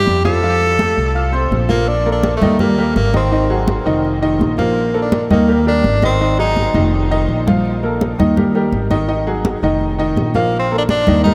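A bright, punchy tenor saxophone with vibrato and a touch of delay carries the melody up front in this festive, danceable salsa excerpt in Bb major at 166 BPM, dropping out at 6.9 seconds and returning briefly at 10.4 seconds. A clear, somewhat worn grand piano supplies accompaniment through chords such as Bbadd11, Ab7, F7sus4 and Ebmaj7, while a woody, thumpy pizzicato upright bass sits dark and prominent and high-tuned, ringing congas struck with hard hands stay in the background. A drum fill arrives at 6.6 seconds, and the whole mix is soaked in a huge ambient reverb that lends a dreamy haze.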